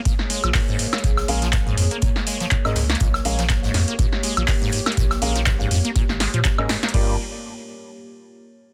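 Acid house at 122 BPM in 4/4 with a swung sixteenth feel, this trippy, raw cut from a longer piece sits in a drop over Bbm7 before shifting to Gm7 at 6.9 seconds. A deep, moody analog pad of detuned square and sawtooth waves with a sub octave holds slow-attack chords, coloured by chorus and phaser and pumping against the kick. The liquid acid bass riff is squelchy and resonant, a bright sawtooth with a filter sweep, tube saturation, lush chorus, phaser and digital delay, while a round, dark analog bass of triangle and sine tones enters at 0.4 seconds, also pumping. An electronic deep kick anchors an up-front analog drum machine with punchy snare, metallic hats, handclaps, crash and woodblock, and a faint brushed jazz kit with a high-tuned snare murmurs in the background. From 1.3 seconds, warm grand piano stabs with short sustain ring out through digital delay, all inside a small room and a dense, heavily limited modern master.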